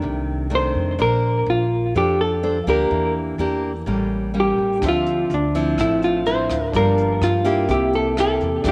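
A moderate echo-chamber reverb gives this short bossa nova excerpt an airy studio glow, and its sunny, breezy mood moves at a straight 125 BPM in 4/4. A full-bodied, fingerpicked nylon-string guitar sits up front from the start, its classical tone carrying audible finger squeaks, while a woody, growly pizzicato upright bass on steel strings anchors the low end. At 0.6 seconds a dark, clean hollow-body jazz guitar takes the melody, fingered and compressed, sitting forward in the mix with a tape echo trailing its notes. At 4.8 seconds a bright, barky tine electric piano joins in the background through a combo amp, alongside a vintage brush drum kit with a punchy kick, hi-hat and rim clicks in a small room with a rolled-off top. The harmony moves from F6 through Bbmaj9, Em7b5 and A7b9 to Dm9, Gm7 and C7.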